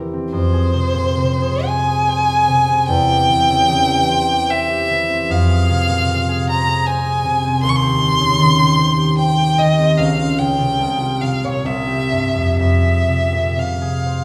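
A fingerpicked concert harp opens with ringing accompaniment, and a rich, focused solo violin enters at 0.3 seconds with a bowed, vibrato-laden melody in its upper register, both placed up front, the violin close. This melancholic, elegiac romantic duo in F minor moves in a rubato 3/4 at roughly 61-79 BPM, its harmony passing from F minor through a Dbmaj7#11 colour at 10.0 seconds to C before settling back on F minor. A wet recital-hall reverb surrounds this excerpt from a longer piece.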